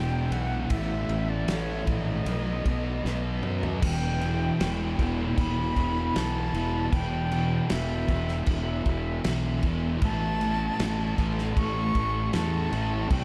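Melancholic and dreamy, this short cut from a longer rock piece drifts in shoegaze and dream pop territory at 77 BPM in a straight 4/4, settling into E minor from 3.8 s. A thick, dark fuzz guitar carries the riff up front, distorted and double-tracked with a lush chorus, while a growly overdriven fingered bass fills the low end beneath it. Above them, a bright concert flute sings the melody with an airy, close-miked tone, expressive vibrato and a soft attack, colored by analog delay. A loose indie drum kit joins at 0.3 s, its fat snare, tight kick, toms, crash and ride heard from a small room with a rolled-off top, and a drum fill from 3.0 s to 3.8 s leads into the second section. The chords move from Em through A5 and B before returning to Em, shifting to A at 10.0 s, all soaked in a huge ambient reverb that gives the mix its hazy, dreamlike wash.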